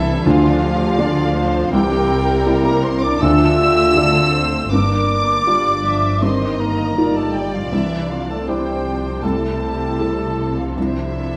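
A moving, bittersweet cinematic passage, cut from a longer piece, unfolds in a loose rubato 4/4 over a gently turning progression. A muted violin section carries the melody, its con sordino tone dark and veiled with light vibrato, while a second violin line, a mellow clarinet that sounds distant and roomy, and a hollow, pure concert flute with lifted highs weave supporting lines in the background. A felt-muted upright piano with audible action noise and short sustain provides soft, intimate accompaniment alongside a muted viola section. A mellow French horn section holds sustained chords, and muted cello and double bass sections anchor the low end with a soft-attacked bowed sound, the cellos lush. A very quiet timpani, played with hard mallets, sounds close and dry from 0.3 to 1.3 seconds, set against the wet scoring stage reverb that surrounds the orchestra.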